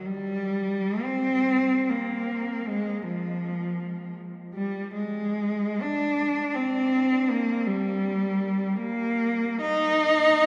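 Lonely and yearning, this short fragment of a longer classical piece gives a single bowed cello the floor for its full 10.5 seconds, playing freely and expressively. The instrument sounds rich, smooth and even, with vibrato, as it moves between F3 and Eb4. It sits up front yet sounds distant, wrapped in a cathedral's long, echoing reverb.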